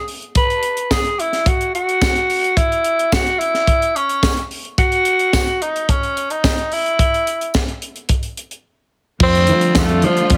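Disco with a celebratory, glamorous air, cut from a longer piece and moving in a straight 4/4. A growling tenor saxophone carries the melody up front, its raspy, gritty subtone touched with light vibrato, distant and roomy with a jazz-style edge, and passed through a low-pass filter. A tight funk drum kit drives the groove from the start, its punchy kick, high-tuned snare, hi-hat and crash cymbal treated with gated reverb, while a jingly tambourine sits close and dry in the background. After a brief break at 8.7 seconds, a fingered electric bass arrives at 9.2 seconds with a growly, amped tone, alongside a lush, bowed string section entering at the same moment and holding smooth, focused sustained chords behind it. The recording sits in light reverb and small room ambience.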